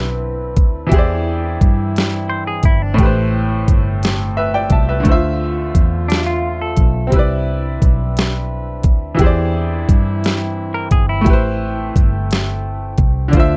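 Slow six-eight R&B in an intimate mood, this dry, dark-toned excerpt pairs a brilliant, up-front baby grand piano and mellow, lightly vibrato brass chords with a round, foam-muted fingered electric bass and a produced drum kit of knocking kick, deep snare and smooth hats, while a clean, compressed semi-hollow electric guitar adds a second line from 2.3 to 7.1 seconds and briefly again near 10.7 seconds over a Cmaj9, E7alt, Am7 and Dm9 progression.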